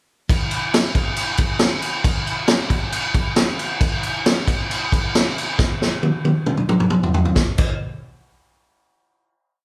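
Swaggering and raw, this short rock piece is carried entirely by a vintage acoustic drum kit playing a big, straight rock groove in 4/4. The kit sits up front and mid-forward, with a punchy kick, a medium-tuned snare, toms and dark, rolled-off crash cymbals. A moderate reverb from a large studio room surrounds the drums, giving the sense of a band playing live together in one space. The groove drives the riff section from 0.3 seconds, and a drum fill from 5.6 seconds leads into the closing hit at 7.4 seconds. The drums stop at 7.7 seconds, leaving the room to ring out to the end of the piece.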